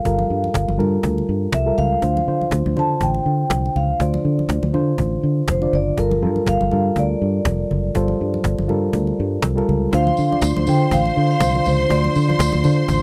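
Driving and glamorous, this disco excerpt in D minor moves at 122 BPM with a light swing, built on a dry, close 1970s-style studio sound. A ringing, metallic vibraphone played with soft mallets carries the melody over a reedy, mellow electric piano, while a round, dark fingered bass sits up front beside a woody cajon and thick-skinned congas in the background. At 9.9 seconds a lush, bowed violin section with smooth vibrato adds a second line, and a jingly vintage tambourine joins at 10.2 seconds.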